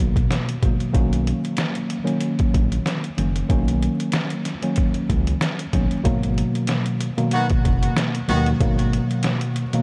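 Soaked in a huge ambient reverb with vinyl crackle, this dreamy, moody and gritty boom-bap hip-hop excerpt at 94 BPM in G# minor swings over a worn, slightly out-of-tune tine electric piano up front, a smooth gliding synth bass with vibrato and portamento, and a muffled, pitched-down sampler-style drum kit with a thumpy kick, moving from G#m7 to Bmaj7 before a tight jazz-style horn section adds soft-attack stabs with tape echo at 7.3 seconds.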